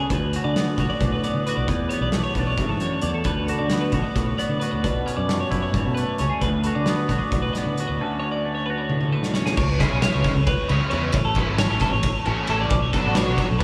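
This excerpt moves in a brisk, straight 7/8 at 266 BPM counted in eighths, a bright and intricate slice of math rock and midwest emo in D lydian. A twangy, clean electric guitar with phaser carries the accompaniment until 9.6 s, while a bright twelve-string electric guitar spins high arpeggios throughout, coated in subtle chorus and a diffuse ambient delay. Beneath them a growly, punchy fingered electric bass and a loose indie drum kit with dark cymbals, a punchy kick and a gritty, saturated room sound drive the piece, and a drum fill from 8.9 s leads into the second section. At 9.8 s a cranked, double-tracked stack guitar arrives with an overdriven riff thickened by ensemble chorus, over chords shifting from C#m7 to Amaj9 and Bm9. The whole mix is dreamy and soaked in a huge ambient reverb, with the clean guitars and drums sitting up front.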